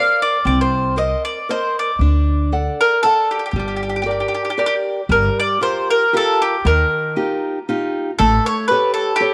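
An Italian folk serenade in G minor, this romantic, wistful passage sways in 3/4 at 116 BPM with a light swing, its chords drifting from Cm7 through D to Gm before turning toward Ebadd9 and A7. A bright, picked bowl-back mandolin sings the double-string melody up front, over a small, fresh-stringed nylon guitar fingerpicking the accompaniment. A woody, thumpy upright bass with dark gut strings plucks from 0.5 to 8.4 seconds, and a moderate echo-chamber reverb lends the short section cut from a longer piece a sense of space.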